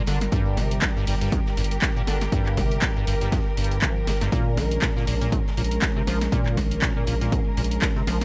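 Lightly reverberant, this hypnotic, trippy acid house excerpt at 120 BPM in G minor pentatonic, with a 16th-note swing, layers a squelchy, resonant square-wave acid bass riff with tube saturation, chorus, delay, a filter sweep and sidechain pumping over a deep, thick, saturated sine sub bass, a punchy up-front electronic kick, an analog drum machine of handclaps, hi-hat and snare in a short room, a very quiet soft-mallet kit with a fat snare in a big room, and a pumping string section whose rich, bowed chords with vibrato move from Gm7 to Bbm7 at 4.3 seconds.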